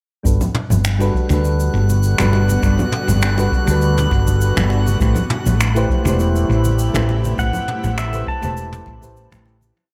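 Sunset chillout in A dorian, a short, complete piece at 101 BPM with a lightly swung sixteenth-note groove and a warm, wistful mood. A woody, growly fretless electric bass sits up front with a round, hollow-body tone and a dotted rhythm, anchored by a soft, deep electronic kick that is dry and tape-warm. Quiet jazz brushes play a light lounge beat with finger snaps, shaker and low toms under tape echo, while hard-handed congas add faint, bright accents. Soft, mellow electric-piano-like synth keys play syncopated chord stabs in spread voicings with chorus and tape echo, moving from Gmaj7 to Am7 at 5.0 seconds, as a shimmering, ethereal pad with phaser and a glassy, drifting high texture fill the space behind them. Near the close, a clean pedal steel guitar enters at 7.4 seconds with slide and volume swells on short call phrases, carried through the fade-out that begins at 6.6 seconds, all within an echo-heavy mix with light studio ambience.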